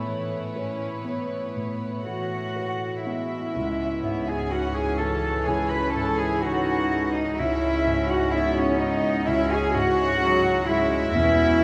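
A long cathedral reverb washes over this tender, hopeful cinematic fragment, cut from a longer piece and moving in a slow, rubato 4/4 at around 59-65 BPM as Aadd9 gives way to C#madd9. Sul tasto strings open together, with two violin lines, a rich viola section in the background and an up-front cello section on the bass, beside a muted, thick-felt upright piano. A hollow, airy flute and a mellow horn section join near 2.0 s, a bright clarinet and double basses follow around 3.5 s, and close, dry timpani with hard mallets sound an E at 11.1 s.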